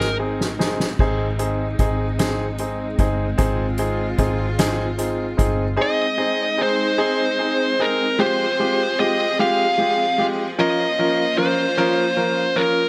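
A small-room ambience frames this tender, swaying six-eight pop ballad in Ab major at 50 BPM, cut from a longer piece. A soft-mallet drum kit opens with a fill, its fat snare and punchy kick sounding distant and roomy, while a dark, foam-muted vintage electric bass and an intimate grand piano, with audible action noise and long sustain, sit alongside lush, bowed studio strings with vibrato; the drums and bass fall away by 5.8 seconds. From there a distorted fuzz lead guitar with tape echo carries the melody up front over piano and strings, and the harmony moves from Ab to Fmadd9 at 8.2 seconds.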